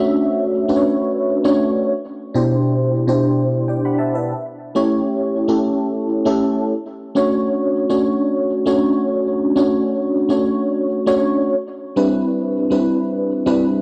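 This home cassette recording has a light reverb around it. It captures a glossy, urban pop passage cut from a longer piece. At 100 BPM in 4/4 and D major, it moves with a gentle swing on the sixteenths. A solo FM electric piano carries the whole 13.8 seconds, ranging from B2 to B5 and sitting up front. Its tone is glassy, with a bell-like attack over a full-bodied, mellow, decaying body, a noise layer, ensemble chorus, cassette tape character and analog delay. The harmony moves from Dmaj7 to Cmaj9 and A7, returns to Dmaj7, then settles on Cmaj9 at 11.5 seconds.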